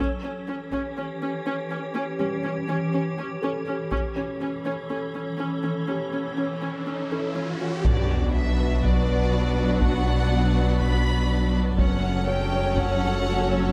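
Cinematic hybrid orchestral and electronic film score, brooding and relentless, cut from a longer piece. A swarming, detuned drone sits up front over a smooth studio viola section and a mellow felt-muted upright piano with delay, while a dry taiko ensemble strikes with heavy sticks in the background and an electronic riser and sub drop arrive at 6.1 seconds. At 7.8 seconds the impact lands as a lush violin section takes the melody with vibrato and portamento, backed by a second violin line and a clean sine sub bass, joined a moment later by distant cellos and a very quiet double bass section, all set in a lightly reverberant room.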